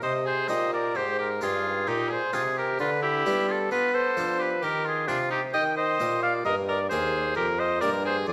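A warm oboe carries the melody up front, its light vibrato, soft attack and smooth top lending a grave, flowing voice to this short cut from a baroque-style sonata movement in triple time. Alongside it, a second oboe traces its own line with a clear, punchy tone, also placed forward. Beneath them, a dark bassoon holds the bass with a soft attack and its own light vibrato. A plucked harpsichord in the Italian manner, full-bodied with two sets of strings, supplies the continuo accompaniment throughout. The harmony moves from C minor through a diminished chord to settle on E-flat, and all four parts sound together for the full 8.3 seconds in a moderate recital hall reverb.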